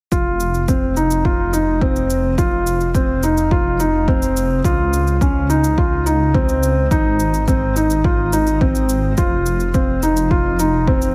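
Hypnotic and melancholic, this short cut from a longer piano-and-strings electronica piece moves at 106 BPM in F minor, with a soft, felt-muted upright piano riff sitting up front, its mellow, intimate tone trailed by delay and shimmer reverb. Beneath it, a dark detuned saw bass rumbles with a deep, saturated, beating tone and sidechain pumping, while a punchy, layered electronic kick and a quieter shaker, both re-recorded in a small room, hold a straight 4/4 pulse. A lush hall reverb surrounds the parts as the harmony moves from F5 to Dbadd9 at 4.6 seconds, then Ab, and back to F5 at 9.2 seconds.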